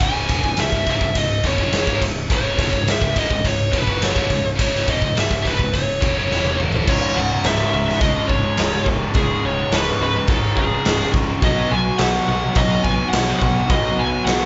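A straight, driving 4/4 pulse anchors this dark, heavy metal fragment, cut from a longer piece, with a big acoustic rock kit placed up front, its punchy kick and medium-tuned snare ringing in a bright stone room alongside crash, ride and toms. A murky, distorted high-gain lead guitar carries the melody over a background of a scooped high-gain riff guitar, a heavy high-gain riff guitar and a growling, overdriven electric bass. A drum fill starting at 6.3 seconds hands off at 6.9 seconds to a new section where the heavy guitar drops out and a double-tracked, cranked stack guitar joins the riff, all captured live in one room with light reverb and a muffled top end.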